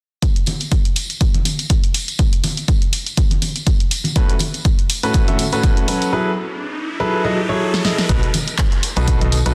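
A dense, heavily limited modern master with light reverb and digital ambience carries this feel-good, uplifting piano house excerpt, cut from a longer piece and swung on the sixteenths. A punchy analog kick sits up front beside a drum machine of handclaps, hi-hat and snare, both re-recorded in a large room, with vintage, band-limited tambourine and congas underneath, and a clear, natural grand piano riff enters at 4.2 s with sidechain pumping and tape echo. An electronic riser and a drum fill lead into 8.1 s, where a hollow, dark, organ-like FM bass with tube saturation and sidechain arrives on a B7 chord.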